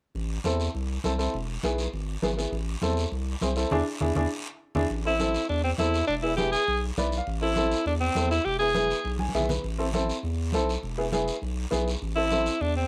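An edgy, punchy alto saxophone with vibrato takes the lead at 5.1 seconds over a driving, danceable cumbia groove, where a clear, woody, slightly detuned upright piano with plate reverb comps up front, a deep, saturated sub bass holds the low end, thick-skinned, damped congas sit in the background, and a raspy guiro scrapes along, all with the gritty character of a home cassette recording.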